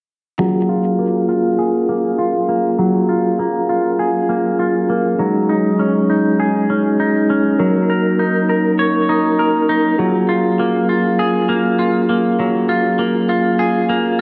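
Bathed in a wet recital-hall reverb with digital ambience, this dreamy, ethereal dream pop passage pairs a bright, clean semi-hollow electric guitar up front, playing picked, compressed arpeggios through lush chorus, delay and a low-pass filter, with a soft, flute-like tonewheel organ holding sustained chords through a fast rotary speaker and its own low-pass filter, while a filter sweep spans the whole passage over chords moving from Gbmaj9 through Ab7sus4/Gb and Ebm7/Gb back to Gbmaj9.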